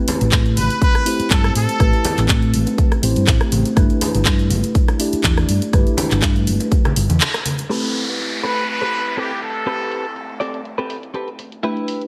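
Nu-disco with a sensual, cosmic mood, built on a mellow tine electric piano with phaser and delay, a punchy up-front electronic kick, a layered pop kit of handclaps, filtered hi-hat and rim click, distant ringing congas, maracas and bongos, and a dark, round hollow-body fingered bass. A tight, bright trumpet section with light vibrato and a soft attack plays a short delayed phrase over the opening Am9 chord. The kick drops out at 6.8 seconds, and after a band accent and break at 7.2 seconds the bass and hand percussion fall away. At 7.7 seconds a clean, compressed direct-recorded guitar riff with subtle chorus enters under a filter sweep, alongside a downlifter and a return of the trumpets.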